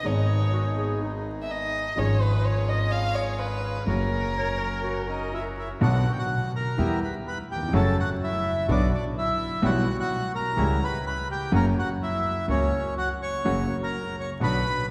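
A dark, bowed violin opens this sultry, melancholic tango excerpt up front, a lone, expressive player singing with vibrato and portamento until 5.5 s. The music moves at 126 BPM in 4/4 with a rubato feel. Beneath it sit a natural-sounding concert grand piano with deep bass and audible action noise, a woody, growly pizzicato upright bass, and reedy bandoneon stabs set back in a boxy small room. A mellow, breathy clarinet drifts in the background in a vintage jazz style, with light vibrato, scooped notes and a soft, whispered attack. From 5.1 s a second bandoneon takes the melody, airy and up front, as the harmony moves through B minor, E minor and F-sharp minor toward C-sharp diminished and F-sharp. Wet church reverb surrounds the ensemble, and vinyl crackle sits over it.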